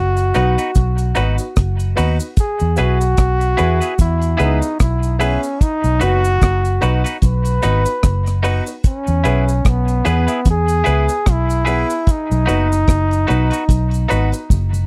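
Roots reggae at 74 BPM in E major, laid-back and uplifting, with a swung sixteenth-note feel in this short cut from a longer piece. A clear, punchy trombone carries the solo melody up front, its light vibrato and smooth top trailed by tape echo. Beneath it, a foam-muted fingered electric bass sounds round and dark, while a deep reggae drum kit with a tight kick, rim click, hi-hat and toms sits dry with its top rolled off, ending on a fill at 14.5 seconds. A bright, clean semi-hollow guitar adds compressed, picked accompaniment with its own tape echo, a worn, woody, slightly detuned upright piano punctuates with stabs, and a faint cabasa rattles in the background. The chords move between B and E throughout, and the 1970s-style studio sound is close and dry with little reverb.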